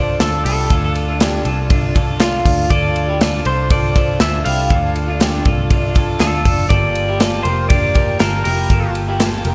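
A twangy, slightly broken-up lead guitar carries the melody from the first instant, joined by a second picked guitar spinning compressed arpeggios through lush chorus, a reedy combo organ with light vibrato, and a dark, round, foam-muted bass, with slapback echo on the guitars and organ. Just after, at 0.2 seconds, a punchy, up-front studio drum kit with bright cymbals enters alongside very quiet, hollow group handclaps. This restless, wistful fragment of jangly indie pop in straight 4/4 moves from D minor to G minor seventh at 6.7 seconds, set in a lush hall reverb that gives it a big arena sound.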